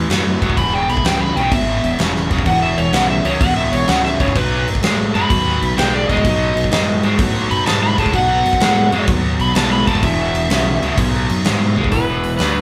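Recorded live in one big studio room with a moderate reverb tail, this swaggering, gritty swung blues rock and southern rock excerpt sets a crunchy, double-tracked overdriven guitar riff shimmering with harmonic tremolo over a growling fingered electric bass with overdrive and an up-front big rock drum kit with a tight kick and medium-tuned snare, while a bright overdriven slide guitar enters at 0.6 seconds to carry the solo melody, and a drum fill arrives at 11.7 seconds.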